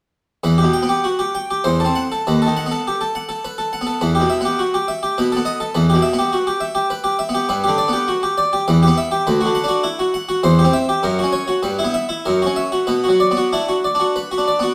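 In a flexible, rubato triple metre, this solemn, introspective fragment of a baroque-style suite movement features a brilliant, Italian-style solo harpsichord, its plucked octave strings placed up front from low bass to bright treble and ringing in a moderate stone-room reverb.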